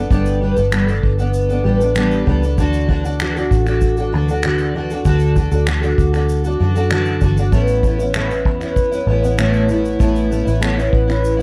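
A fingerpicked twelve-string acoustic guitar opens this heartfelt, easy-going acoustic pop excerpt. It is double-tracked and up front, with a dark, full-bodied jumbo tone and a shimmering octave-doubled sparkle. A vintage electric bass sounds alongside it from the start, foam-muted and amped with a dark, round low end. An unplugged drum kit joins just after with finger snaps, a punchy kick and shaker, played with bundle sticks and carrying an airy small-room polish. The harmony moves from Gadd9 to D at 2.6 seconds and on to Aadd9 at 7.5 seconds in a straight, unhurried groove. The sound is dry and close, in the manner of a 1970s studio recording, and the passage is cut from a longer piece.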